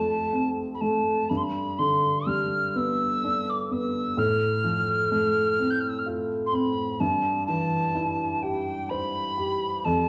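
A worn, warbling cassette sound colours this short excerpt, with pitch drift, faint mains hum and small-room ambience sitting under a recital-hall reverb that rings for about 1.9 seconds. It is a nostalgic, pastoral Celtic slow air in 6/8, moving freely in rubato around 42 beats per minute on the dotted quarter, tuned to A4 = 436 Hz. A reedy wooden whistle carries the melody from G5 to G6, airy and tongued with a soft chiff at note starts and a gentle vibrato. Beneath it an intimate upright piano accompanies from F2 to C5, woody and slightly detuned, with its action noise clearly audible. Both parts play together for the full 10.1 seconds over a simple progression of F, G, F/A and C/G.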